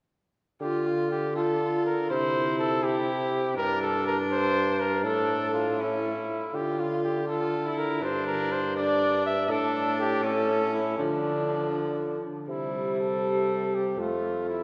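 A renaissance-style classical consort dance in D minor with a rustic, courtly mood, moving at a straight 81 BPM in 6/8, where a present, lightly vibrato cornet carries the melody over a rich, gut-string viola and a mellow solo bassoon bass, all three playing together from 0.6 to 14.6 seconds and heard from further back in a church with a long, wet reverb as the harmony turns from Dm through C, G5 and Asus4 to A before closing on C and F in this cut from a longer piece.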